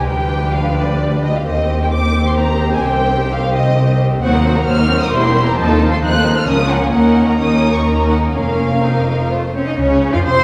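Stormy and dramatic, this quick classical-period movement for string orchestra moves in a rubato triple metre, shifting from a minor home toward a second minor centre after 4.2 seconds. A lush, focused violin section carries the melody over a richly expressive second violin line, while glowing, vibrato-laden violas fill the middle and a rich cello section sits in the background. Up front, the double basses add soft-attack, portamento-tinged depth, the whole ensemble heard from further back on a reverberant scoring stage in this brief cut from a longer piece.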